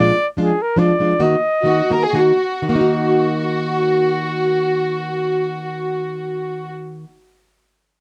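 In a swung triple metre, this short passionate, dramatic mariachi fragment of a longer piece opens by slowing down, moving from a rootless Bb7 to Eb minor. A soft-attacked, mellow trumpet carries the melody in a close, classical-style solo placed up front, and it falls silent at 2.2 seconds. Beneath it, a fingerpicked nylon-string guitar gives bright, fresh-stringed classical accompaniment with audible finger squeak, sounding up front through to 7.2 seconds. A chamber violin section enters at 1.7 seconds with a bowed second line, earthy and smooth on top with light vibrato. Light reverb and a dark, warm production give the whole an intimate, dusky feel.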